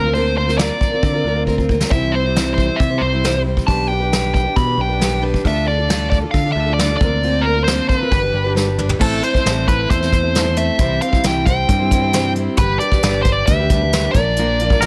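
A straight 4/4 groove at 135 BPM comes from a soft brush drum kit, up front with a medium-tuned snare and tight kick and a couple of short fills, while a warm, picked electric bass anchors this nostalgic, jangly folk rock and heartland rock excerpt in C major. A boxy, parlour-sized plugged-in steel-string acoustic guitar picks the accompaniment as a dark, nasal lead guitar with a parked wah and overdrive carries the melody up front through a shift at 9.0 seconds to a new section. The sound is dry and close, and a clean, twangy electric guitar appears only at 14.8 seconds for a single note before the cut.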